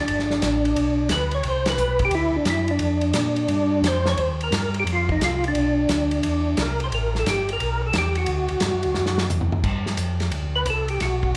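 A swinging 4/4 groove at 176 BPM drives this bluesy soul jazz organ trio, with a soul drum kit of dark cymbals, a medium-tuned snare and a tight kick under a tonewheel organ bass line, all set in a moderate concert-hall reverb. Up front, a percussive tonewheel organ carries the melody with third-harmonic percussion, chorus vibrato and a slow rotary speaker, while the bass organ, also on slow rotary, sounds round and clean with audible key click. A band accent lands at 1.6 seconds, and a drum fill at 9.0 seconds leads into a brief organ solo from 9.6 seconds.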